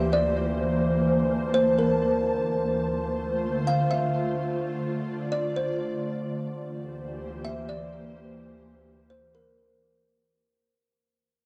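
A hazy home cassette recording with a small, wet room around it, this short hip hop excerpt moves at 127 BPM in a half-time feel and drifts in an ethereal mood. An up-front synth pad holds sustained chords throughout, its slow attack and long release giving the sound an airy, evolving quality, while detuned sawtooth and triangle tones, ring modulation, ensemble chorus and reverb, plus cassette tape coloring, make it mellow. Alongside it, a kalimba carries the melody between Bb4 and F5, its thumb-plucked notes woody and ringing with a hollow-box resonance, softened by a low-pass filter and trailed by analog delay. The harmony shifts from C7/D to Dm7 at 2.7 seconds and returns to C7/D later. From 2.7 seconds the music fades out, and the excerpt is cut from a longer piece.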